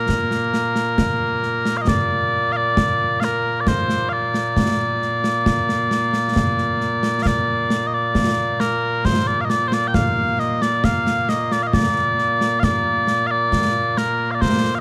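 Proud and ceremonial, this short fragment of Scottish traditional pipe music moves at a stately 67 BPM in 3/4 time, set in Bb major. Small bagpipes carry the melody from the very start, their tone mellow and sweet, sustaining a continuous line up front that spans from Bb2 to G5. Concert snare and bass drum join at 0.1 s, an acoustic, closely heard kit whose cymbals have a dark colour. After a brief opening phrase, the tune restarts at 1.9 s and runs through to the cut at 14.8 s. Close, detailed microphones catch the pipes and drums, while a moderate concert hall reverb with a 2.2-second decay gives the performance a sense of grand space.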